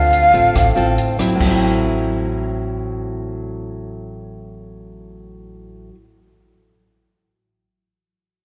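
Melancholic and intimate, this short bossa nova fragment in A minor moves at 141 BPM in a straight 4/4 and is cut from a longer piece. A breathy concert flute carries the melody on a single high note at the start, its tongued, expressive line shaded with vibrato and lifted highs, and it stops by 1.0 seconds. Up front, a classical nylon-string guitar is fingerpicked throughout, warm and acoustic, with audible finger squeak as the harmony shifts from Dm7 to Am6 at 1.4 seconds. Beneath it, a woody, thumpy upright bass plucks pizzicato on steel strings in a low register. A compact cocktail drum kit adds a brief, dry touch of punchy kick, rim click, hi-hat and a dark crash cymbal before dropping out at 1.5 seconds. The whole performance sits in a wet church reverb, giving the intimate playing a long, spacious tail.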